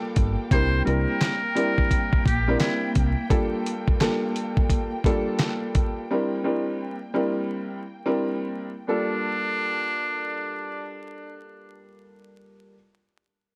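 A muted trumpet carries the solo melody, its buzzy, breathy tone whispered and intimate in a jazz style, sitting up front from 0.5 to 2.9 seconds and returning at 8.9 seconds with a digital delay trailing its filtered line. This is a reflective yet tough boom-bap hip-hop cut at 86 BPM in 4/4 with a swung sixteenth-note feel, taken from a longer piece and moving between Gm7 and C7 in G dorian. A woody, slightly detuned upright piano carries the accompaniment up front throughout, while a dark, lush string section holds bowed chords with vibrato until 8.8 seconds. A dusty sampler-style drum kit with a thumpy kick, fat snare, hi-hat and handclaps hits gritty and compressed, and a round, deep fingered electric bass with transformer saturation anchors the opening seconds. Small room ambience, warbling cassette tape drift and vinyl crackle give the whole recording a worn, warbly patina.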